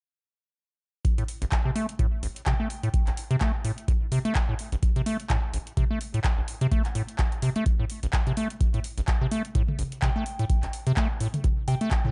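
A dark, softly reverberant production with its top end rolled off frames this trippy, hypnotic acid house excerpt at 127 BPM in 4/4, carrying a 57% swing on the sixteenths and sitting on A minor throughout. A deep electronic kick sits up front, re-recorded in a large room, alongside a booming analog drum machine of handclaps, metallic hi-hats and toms that shares that roomy character. The square-wave acid bass riff is the centrepiece, squelchy and hollow with a resonant filter sweep, fast attack and decaying notes, pushed forward with overdrive, cassette tape grit and sidechain pumping across its A1 to A3 range. In the background, a soft FM synth bell rings a mellow, pure G5 from 2.5 to 3.1 seconds and again from 10.0 seconds, its gentle tone shimmering with chorus and trailing tape echo. The drums and bass run steadily from about 1.0 seconds to the end of the cut.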